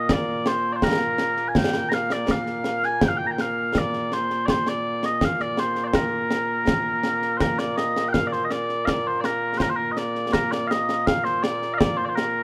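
This short piece of Scottish traditional pipe music has a stirring, ceremonial mood, moving at a steady 82 BPM in a straight 2/4 metre in Bb major. Mellow small bagpipes carry the melody from the opening moment, their sweet, continuous tone touched with vibrato and reaching from Bb2 up to Bb5. A concert snare drum and concert bass drum enter almost at once, sitting up front with an acoustic sound and bright cymbals. The tune moves through one section before a second begins at 7.4 seconds, and both parts play on to the close of this brief cut from a longer performance. The sound is a rough home demo with light reverb and a small-room ambience that keeps the pipes and drums close and immediate.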